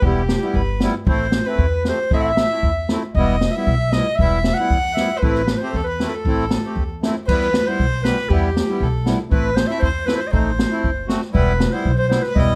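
From the first beat, a mellow, smooth-topped clarinet carries the melody over a biting, nasal violin second line, a reedy accordion with slow beating, a thumpy gut-string pizzicato upright bass and a distant, roomy jazz kit with a high-tuned snare, boomy kick and dark cymbals, in this festive yet bittersweet klezmer excerpt in 2/4 at 117 BPM in A dorian sharp4 that speeds up as its harmony sways between Em and Am under light reverb.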